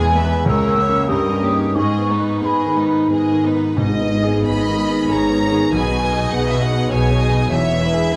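A recital hall's moderate reverb surrounds this brief, brooding and passionate passage from a romantic movement for piano and orchestra, moving in a rubato triple metre. A clear, up-front grand piano carries the melody with long sustain, joined above by a violin section that also carries the melody, its bowed vibrato focused and rich, while a second violin line runs smooth and even beneath it. An airy, hollow flute group adds a mellow second line with a crisp attack until 3.1 seconds, as a viola section with expressive portamento fills in the accompaniment from the background and cellos hold the bass. At 3.8 seconds the passage restates its opening idea, a double bass section joining the cellos underneath and a very quiet timpani struck with hard mallets sounding briefly. The harmony turns through diminished and dominant-seventh colours into the minor home chord before settling toward a major chord near the close.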